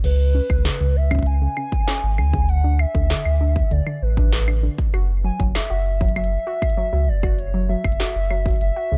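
A round, up-front sine sub bass anchors this intricate, melancholic IDM passage in F# minor at 98 BPM, cut from a longer piece. Above it, a detuned, wave-folded lead with chorus, delay and vibrato sings a warbling, nostalgic melody, while a dusty, lo-fi pluck with ring modulation and chorus spins mellow arpeggios. An industrial kit of claves, crash, crisp hats and a clanging snare drives the groove, joined at 0.5 s by a heavy electronic kick, all set in a dry, gritty digital ambience.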